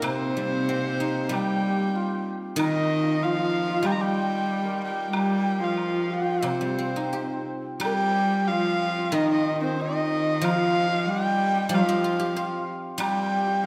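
A wet scoring-stage reverb surrounds this tender, wistful Chinese traditional chamber piece, cut from a longer work and moving in a free, rubato 4/4. Up front and intimately close, a single bowed erhu carries the melody with light vibrato, soft attacks, portamento and an airy bow. A rich, smooth cello sits just as close in the low register with a slightly nasal edge, while a hollow, breathy bamboo xiao drifts in the distance as a mellow tongued line. A shimmering hammered dulcimer and a silvery guzheng plucked with fingerpicks ring through the middle, the guzheng spreading the accompaniment across the broadest span. A woodblock ticks softly in the background of a live room until 13.2 s, and the music shifts into a second section at 7.8 s.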